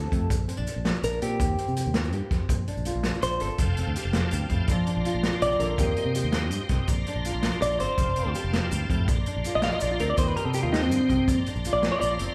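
The rhythm rolls in a straight 12/8 at 109 beats per minute, counted in dotted quarters, giving this joyful, danceable highlife guitar band excerpt its lilting step. A vintage drum kit sits up front with a punchy kick, a medium-tuned snare and hi-hat, its top rolled off, while a round fingered electric bass anchors the low end and grainy, mellow maracas sit in the background. Across the whole passage, a clean, compressed electric guitar takes the lead with picked arpeggios bathed in spring reverb, and a deep, fingerpicked nylon-string guitar with audible finger squeak fills in the accompaniment beneath it. At 3.6 seconds a gritty, overdriven tonewheel organ enters with thick sustained chords, turning through a slow rotary speaker and chorus vibrato. The harmony cycles through Bbadd9, Eb6 and Fadd9, and the band plays live together in one room, carried by a moderate large studio reverb.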